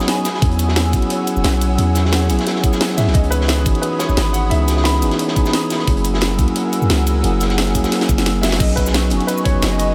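A dreamy, reverb-soaked mix opens this rolling liquid drum and bass excerpt at 176 BPM in C# dorian, where a mellow tine electric piano with diffuse delay and an airy, breathy, chorused pad that pumps against the kick carry chords moving from E69 through C#m9 and F#9 to B69. A deep, up-front 808-style bass and a knocking electronic kick arrive at 0.4 seconds, driving a layered kit with a cracking snare, crash, hi-hat and shaker over a gritty, saturated breakbeat kit tucked into the background, with a drum fill leading into the return of the section at 8.6 seconds. A dark concert grand piano threads a mellow melody through the haze from 3.0 seconds, echoing in its own ambient delay.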